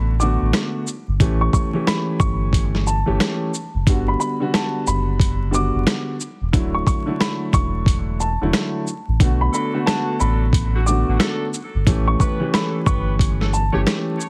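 Dark and reflective, this boom-bap hip-hop excerpt swings over a dusty, gritty sampler-style drum kit with a thumpy kick, rim click and shaker, while a deep sine sub bass sits up front beneath mellow grand piano chords moving from Bm7 through A7, Gmaj7 and Dadd9. A woody upright piano carries the melody high above with a touch of digital delay, both pianos intimate and vintage with audible action noise. At 9.5 seconds a tight, clear horn section adds stabs, and the whole mix has a heavily compressed radio sound dusted with vinyl crackle.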